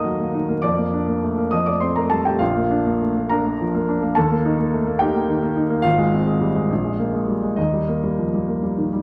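A clear, present grand piano plays alone in this brilliant, heroic excerpt from a classical virtuoso study in 6/8, moving with rubato at 69 BPM in dotted quarters, spanning Ab1 to Eb6 as it shifts from Bb major to Eb major at 5.8 s, set in a moderate scoring-stage reverb with a dark, warm production and a vinyl crackle.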